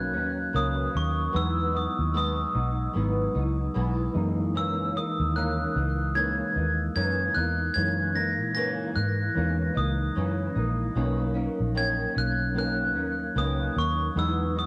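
A bell-like glockenspiel, struck with soft plastic mallets and bathed in lush chorus and cassette tape grain, carries the dreamy, nostalgic melody up front in this excerpt of slow bedroom-style indie pop at 75 BPM in B major, with a 16th-note swing. Beneath it, a fingerpicked flamenco guitar with ensemble chorus and vibrato, a worn, slightly out-of-tune tine electric piano heard through built-in speakers, and a dark, round, foam-muted electric bass play throughout the 14.7 seconds over Bmaj9, Emaj7 and F#13 chords. A small room ambience and light reverb give the home cassette recording an intimate, faded feel.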